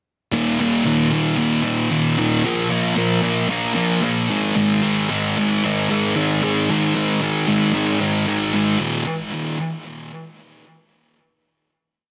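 Brooding and cathartic, this short rock piece at 113 BPM in straight 4/4 features a lone thick fuzz guitar, double-tracked and up front, driving eighth-note power chords from Eb5 through Bb5 and Ab5 with distortion and digital delay before ringing out on a final Eb5 chord at 8.8 seconds, all set in digital ambience with a dense, heavily limited modern master.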